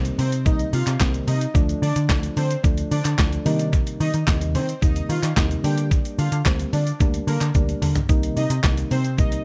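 Dry yet echo-heavy and darkly rounded at the top, this confident, energetic dance-pop excerpt opens with soft, warbling electric-piano-like synth keys thickened by chorus and a dark, foam-muted picked electric bass, both pumping with sidechain. A crisp, sampler-style 8-bit drum machine sits up front with a thumpy kick, medium-tuned snare, handclaps, hi-hat, shaker and toms, and throws in a fill from 7.5 to 8.1 seconds. Just after the start, a mellow, detuned supersaw carries the melody through analog delay and the same pumping, over chords moving from Cm7 through Dm and Gm/D back to Cm7.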